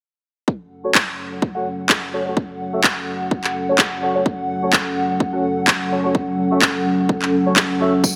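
Lightly reverberant and up close, this bouncy, swaggering bass house excerpt moves at 127 BPM in F# minor with a 16th-note swing, resting on a single F#m chord. A punchy, overdriven electronic kick with a high-pass filter and tape-warm electronic handclaps sit up front, while a moody, detuned analog pad with a slow attack holds sustained chords from 1.2 seconds, colored by chorus and sidechain pumping. A jazz-style horn section with light vibrato fires bright stabs through a low-pass filter, tape echo and sidechain pumping, and a jingly tambourine appears only at 8.0 seconds.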